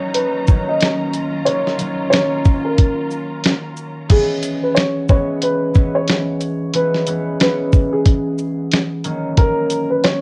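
A dark, woody upright piano carries the melody from the opening moment, joined by a ringing, fingerpicked concert harp up front and a lush, distant bowed string section holding smooth chords with vibrato. A gritty, compressed sampler-style drum kit enters at 0.1 seconds, placed up front with a thumpy kick, fat snare, hi-hat, shaker and crash cymbal, swinging its sixteenths in a boom-bap hip-hop groove. The strings fall away at 4.1 seconds as the harmony moves from D#m7 to C#m7, leaving piano, harp and drums to carry the repeated section before the chords return to D#m7 at 9.0 seconds. The piano, harp and strings are filtered at both ends of their range, and every part runs through cassette tape, lending the home cassette recording a worn, reflective and dark character within light reverb. This passage is cut from a longer piece.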